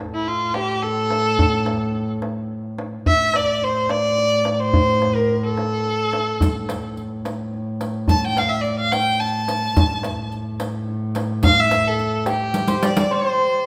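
Persian modal ensemble music in dastgah shur on A, this excerpt from a longer piece moves at 72 BPM in a straight 6/8 with a melancholic, soulful mood, carried by an up-front bowed violin whose rich, smooth vibrato leads the melody while a bowed double bass holds a reedy, gut-string drone on A2 until 13.2 seconds. A bright, shimmering santur adds a ringing second line in brief passages at the start and again from 12.3 seconds, while a tight tombak played with hard hands drives the rhythm and a close, dry riq with bright jingles joins at 6.4 seconds. A drum fill closes the section just before the end, and the whole ensemble sits in a moderate scoring-stage reverb.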